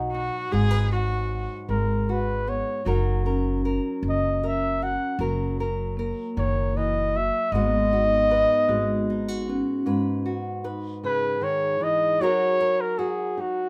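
A mellow flugelhorn carries the melody in a jazz-inflected solo with light vibrato, sitting up front in this melancholic, heartbroken folk-pop ballad in a straight 6/8. Beneath it, a bright, fingerpicked nylon-string guitar provides classical-style accompaniment, while a woody, dark pizzicato upright bass anchors the low end until 9.6 s, and a nasal, intimate cello played sul tasto with an airy bow adds a brief second line at the opening. From 3.3 s a metallic, ringing vibraphone with slow motor vibrato weaves arpeggios through a moderate studio ambience, giving this fragment of a longer piece a tender, aching glow.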